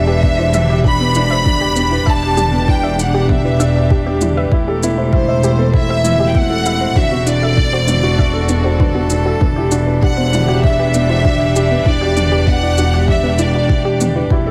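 A soft, overdriven electronic kick and background toms and shaker set a straight 98 BPM pulse in 4/4 for this cinematic, melancholic piano-and-strings electronica piece in E minor, cut from a longer work. Up front, a muted, veiled double bass section holds a low E under sidechain pumping, while a string quartet bows even, sustained chords, a felt-muted upright piano plays an intimate, mellow riff through digital delay, and a dark, round pluck adds chorused, tape-tinged arpeggios with delay and pumping in the background. Above them, a distant, rich violin section carries the smooth bowed melody with vibrato and delay, all within light small-room reverb.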